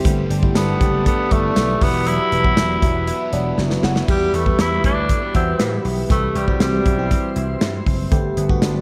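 Moody and nostalgic, this excerpt of 1980s-style pop in E minor moves at a straight 119 BPM in 4/4, with a breathy, raspy tenor saxophone carrying the melody up front from 0.6 to 7.3 seconds, echoed by delay. Beneath it, a punchy slap bass and a modern studio drum kit with bright cymbals, hi-hat, kick, snare and tambourine drive the groove, with a drum fill leading into the second section at 4.1 seconds. A bell-like FM electric piano with chorus and phaser, an ethereal FM pad, a scooped clean electric guitar riff with lush chorus and delay, and a very quiet double-tracked overdriven guitar that drops out at 4.1 seconds fill the dreamy mix, which is soaked in plate reverb over chords moving from Gadd9 and Esus2 to Em and C.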